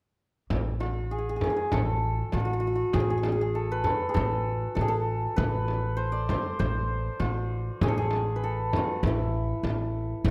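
A woody, thumpy upright bass on A1 and a deep, distant frame drum open this longing, hypnotic excerpt of Persian modal ensemble music at 0.5 s, joined at 0.8 s by an up-front, shimmering hammered santur ringing between E4 and D5 over a straight 98 BPM 4/4 pulse in A avaz esfahan, tuned to A4 = 442 Hz and caught by close, detailed microphones with light reverb, before a tight tombak sounds in the background at 10.3 s.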